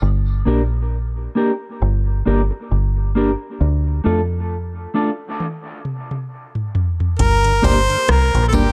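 Dub reggae with a heavy, hypnotic mood, heard here as a short cut from a longer piece in a swung 4/4. It opens on a break, with a deep, round, foam-muted fingered electric bass up front, joined at 0.5 s by a dark, clean electric guitar carrying subtle chorus and dub echo over a Gm to Dm movement. At 5.4 s a soft vintage rhythm box arrives with a fill, its dry, tape-tinged analog sound built from a deep kick, metallic hi-hats, rim clicks and toms, sent through dub echo. At 7.2 s the harmony returns to Gm as a clear, close-miked harmonica takes the melody with light vibrato and echo. A flute-like tonewheel organ with key click and slow rotary speaker sits in the background, alongside a quiet tambourine with egg shaker and group handclaps. A light reverb places the parts in a shared space.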